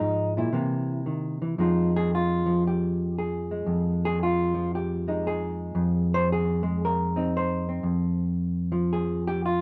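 A clean, dark hollow-body electric guitar, fingered and up front, carries this swinging, smoky solo jazz excerpt in a moderate club reverb, moving from Fm7 through C7#9 before settling into an Fm9 passage from 1.6 seconds onward.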